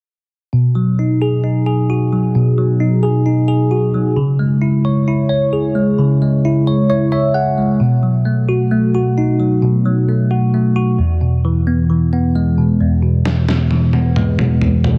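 Tender and emotional, this pop ballad excerpt in B major moves at a slow 66 BPM in a straight 4/4, with a bell-like tine electric piano carrying the accompaniment from 0.5 seconds through chords of B6, C#m, B7 and E, adding a fill at 6.4 seconds under a phaser effect. At 13.3 seconds a lo-fi sampler-style drum kit enters with a muffled, pitched-down, overdriven fill on snare and toms, sitting far lower in the mix than the bright, up-front piano. A lush hall reverb surrounds the parts, and heavy multiband compression gives the whole a squeezed radio sound.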